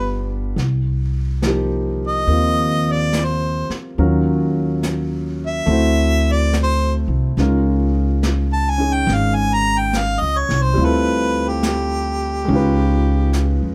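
Swung eighths in 4/4 carry this smoky, intimate jazz fragment, where an up-front, smooth-topped harmonica with light vibrato and scooped notes takes the solo over a clear grand piano with deep bass, a woody pizzicato upright bass, and a distant, roomy brush kit that joins at 0.6 seconds, under light reverb as the chords drift from Cm7 through D9 and Db69 to Dm11.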